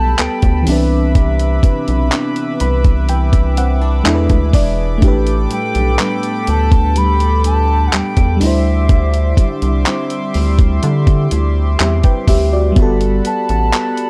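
Contemporary R&B with a smooth, dreamy mood, this short cut from a longer piece unfolds in a relaxed, straight 4/4 over lush chords moving from Gadd9 and Cmaj9 through E7, A9sus4 and D9sus4 to Gmaj9. A pure, mellow silver concert flute carries the melody with vibrato and tongued notes, its sound trailed by delay. An FM electric piano with a soft pad layer supplies the accompaniment, treated with chorus and tremolo, and plays a fill between 2.1 and 5.0 seconds. A shimmering, retro pulse-width pad holds sustained chords, while a nylon-string guitar plays thumb-plucked arpeggios in the background. A rubbery, bouncy square bass sits up front until 13.7 seconds, alongside a gritty, compressed sampler-style drum kit, entering at 0.2 seconds, with a thumpy kick drum, hi-hat and handclaps. The whole is set in digital ambience with a dark production.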